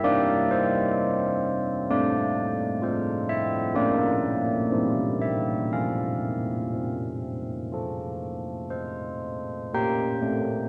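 Heard through worn, warbling cassette tape with pitch drift and a long church reverb, this festive yet serene classical fragment for church bells features a solo carillon up front, its mellow bronze tones, padded clapper and minor-third overtone ringing through a simple hymn-like progression that comes to rest around 5.7 seconds before the bells stop at 10.7 seconds.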